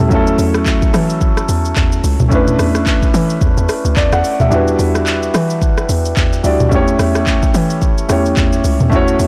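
Deep and hypnotic, this brief amapiano excerpt at 109 BPM with a swung 16th-note feel sets an intimate concert grand piano, its action noise audible, over a hollow, bouncy log drum bass with a fast attack and mellow decay, while an electronic afro-pop kit of deep kick, smooth hi-hat, handclaps, rim click, shaker and toms drives everything, its kick muted from 4.5 to 5.6 seconds, all in a dry, blown-out, overdriven recording moving through F#m7/E, Bm11/E, Em9 and A7/E.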